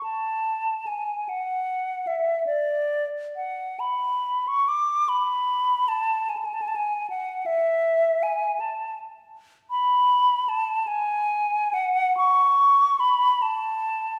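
A free, rubato 6/8 pulse drifts between 42 and 54 BPM in dotted quarters, giving this lyrical, nostalgic classical piece for unaccompanied concert flute in A major an unhurried, expressive sway. The solo flute, tuned to A4 = 442 Hz, sings between D5 and D6 with a pure, hollow tone, vibrato and tongued notes, sitting up front in the mix. A wet recital-hall reverb with a 1.6-second decay places the listener further back in the room for this 14.2-second passage cut from a longer work.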